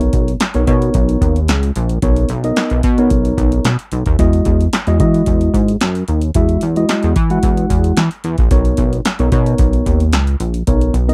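A straight 4/4 groove at 111 BPM from an electro analog drum machine, with a deep kick, punchy snare, metallic hi-hats and handclaps, a short room on the snare, claps and hats, drives this feel-good, danceable early-eighties boogie funk cut from a longer piece in B major. Up front, a glossy, chorused synth bass blending pulse-wave and sawtooth tones with a filter pluck and evolving pulse-width modulation anchors the low end. A mellow tine electric piano, clean through its built-in speakers, comps through Bmaj9, Emaj9 at 4.2 seconds and back to Bmaj9 at 8.5 seconds, all in a dry, close 1970s-style studio sound.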